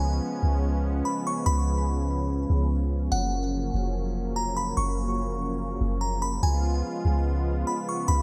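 A light reverb gives this short fragment of a longer piece a soft, floating sense of space. It is atmospheric cloud-rap in F# major at 145 BPM in 4/4, moving with a half-time feel and a dreamy, weightless mood. A deep, round 808-style bass sits up front with a dark sine tone, and a sawtooth analog pad holds sustained chords with a smooth, detuned, mellow chorus shimmer. High above, a glassy FM synth bell carries the melody, its crystalline tone ringing out with a long release through chorus and digital delay. All three parts play together for the full 8.2 seconds as the harmony moves from C#7 to F#maj7 at 3.1 seconds and back to C#7 at 6.4 seconds.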